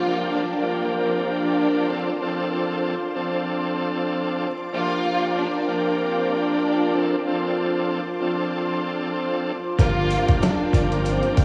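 Swung sixteenths in 4/4 drive this dark, moody boom-bap hip-hop excerpt. An expressive studio violin section carries the melody with vibrato and portamento over a bright, lightly overdriven tonewheel organ with fast rotary speaker and a lush, detuned unison pad in the background. At 9.8 s a gritty, compressed sampler-style drum kit with thumpy kick, a deep sub bass with octave and faint jingly sleigh bells enter, alongside a very quiet vintage saxophone section stab, in a dreamy mix soaked in huge ambient reverb and vinyl crackle.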